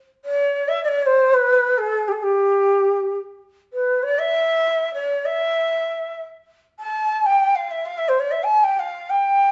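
A stone room's reverb surrounds this short Persian excerpt, with a 1.1-second tail that lingers after each phrase, and the live, single-room recording has a dark top end that stops at 7.9 kHz. A solo ney carries the whole passage, entering at 0.2 s and sounding through to 9.5 s. The end-blown reed cane has a warm, breathy, reedy tone with vibrato and soft attacks. It sits up front yet keeps a distant quality, ranging from G4 up to A5-42c. At 98 BPM in a straight 3/4, the mood is passionate and stately, like a fragment lifted from a longer piece.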